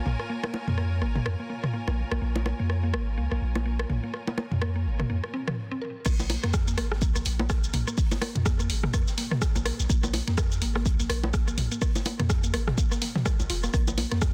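A swung 4/4 groove at 125 BPM drives this sparse, hypnotic minimal techno in Bb minor, cut from a longer piece. From the start, a woody, round mallet-like FM pluck spins a riff through chorus and dub echo, while a punchy sine sub bass with a pitch-drop attack sits up front and an overdriven organic electronic kit of bongos, rim click and toms taps along with tape echo. The pluck and the bass both pump with the sidechain. A distant, lush bowed string section adds a smooth, vibrato-rich Bbm7 texture beneath a filter sweep until a brief break at 5.6 seconds. A very quiet small-room jazz kit with a high-tuned snare slips in at 6.0 seconds, just before the drop arrives at 6.1 seconds on a bare Bb5, bringing in a deep overdriven electronic kick and a layered garage kit with bright hats, crash, rim click and shaker. The dense, heavily limited master wraps it all in digital ambience.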